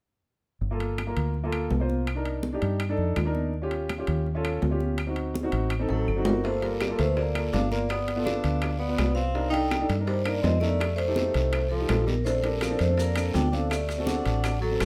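Afro-Cuban jazz in G minor at 165 BPM, this driving, sophisticated passage is cut from a longer piece and rides on a dark, round, punchy fingered electric bass placed up front, joined almost at once by a woody upright piano, bright high-tuned congas, ringing metal-shelled timbales and woody claves sitting in the background. The opening harmony moves through Gm9, Cm9, Eb9 and D7b9 before a drum fill at 5.9 seconds leads into a new section at 6.4 seconds. At 5.9 seconds a vibraphone with medium hard mallets takes the melody, its metallic tone ringing with the motor off, while a warm tenor saxophone with light vibrato and a soft attack carries a lower second line. Tight, vintage-sounding bongos played with soft hands and a raspy guiro join the percussion at 6.4 seconds, and grainy, mellow maracas arrive at 12.3 seconds as the chords pass through Bbmaj7 and D7. Light reverb gives the sound a sense of space.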